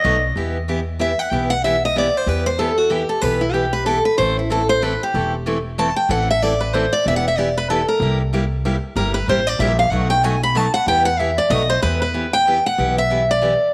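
A bright picked steel-string acoustic guitar carries the melody from 1.0 seconds. Its fresh strings ring high above the band, touched by a slapback echo, and it takes a virtuosic solo through the opening section. This excerpt of acoustic string swing in the jazz manouche style moves in a swinging 3/4 waltz time. A second steel-string guitar sits up front in accompaniment with a warm, picked tone, and you can hear finger squeak along the strings. Beneath it, a pizzicato upright bass on gut strings gives a woody, dark, thumpy foundation through a minor-key progression that moves from Em to Am, C7 and B7. After a new section begins at 11.8 seconds, the accompaniment and bass stop at 13.5 seconds, leaving the lead guitar briefly alone in a light studio reverb.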